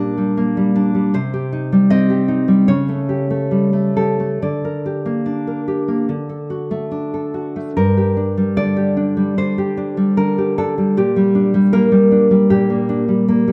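Heard through the long, wet reverb of a recital hall, this dark-toned recording places a single nylon-string guitar up front, its warm body ringing into the room. It is a short excerpt of a romantic piece for solo classical guitar, carrying a melancholic, wistful mood in four with uneven, rubato timing that lets the beats stretch and settle. The guitar is fingerpicked across a span from low G2 up to Eb5, and a finger squeak on the strings adds an intimate, human detail. The harmony moves through minor chords with a dominant pull, passing from Gm/Bb at the start through Cm and A7/C# before arriving on a D chord around 6.1 seconds. It comes to rest on Gm at 7.8 seconds and returns to Gm/Bb at 11.0 seconds, where the fragment breaks off at 13.5 seconds.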